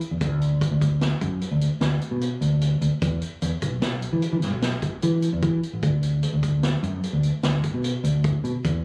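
Set in a straight, uneven seven-beat meter, this short progressive instrumental passage has a driving, bright energy. A vintage drum kit of hi-hat, kick and snare carries the pulse from the opening, with a medium-tuned snare and punchy kick in a mid-forward, rolled-off sound that keeps an acoustic studio-room character. Fretless electric bass enters at 0.1 seconds and stays up front, its round, amped tone moving between A1 and E3. The bass sits louder than the drums in the mix. The whole take carries a light club reverb and compression, captured on a phone in the room, and it is cut from a longer piece, ending at 8.8 seconds.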